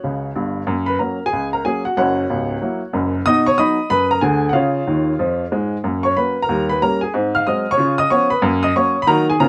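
A clear, woody upright piano opens this short stride-jazz passage at 0.0 seconds and carries it alone through to 9.5 seconds, cut from a longer piece. The mood is swinging and exuberant, moving at a brisk 186 BPM in 4/4 with a 63 percent swing on the eighth notes, in F# major and tuned slightly under standard pitch at A4 = 438 Hz. The piano covers a broad span from deep bass notes up into the high treble, and the harmony moves through F#, B and C# before a turnaround of D#7, G#7 and C#7 leads back home, touching D# minor at the close. A brief piano fill arrives at 4.9 seconds. The instrument sits up front with a polished, present tone, set in a modest booth ambience with a short, tight decay.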